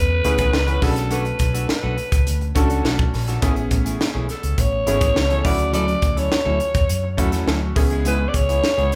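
A gritty, growling alto saxophone leads up front from the first moment over bright grand piano and a dark, foam-muted fingered bass, joined at 0.1 seconds by twangy clean electric guitar and at 0.2 seconds by a crisp fusion kit with punchy kick and high-tuned snare, in a glossy, urban 1980s jazz-funk pop groove at 104 BPM that moves from C#m7 through Bm7, Amaj7 and Dmaj9, heard as a band playing live in one room with moderate large studio reverb and cut from a longer piece.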